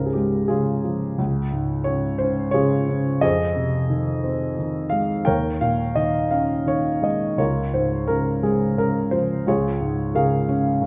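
A dark, mellow grand piano carries this short classical fragment alone, sounding intimate and up front, with the clatter of its action audible beneath the notes. The mood is bittersweet and cool, a lyrical solo passage in 3/4 at 88 BPM, played with a rubato feel that lets the time breathe. Its range stretches from Db2 up to G5, and the harmony moves from Db through Fm7 and Eb7sus4 before settling on Db6 at 7.4 seconds. A moderate concert hall reverb gives the natural piano tone some surrounding air. Cut from a longer piece, the passage lasts just under eleven seconds.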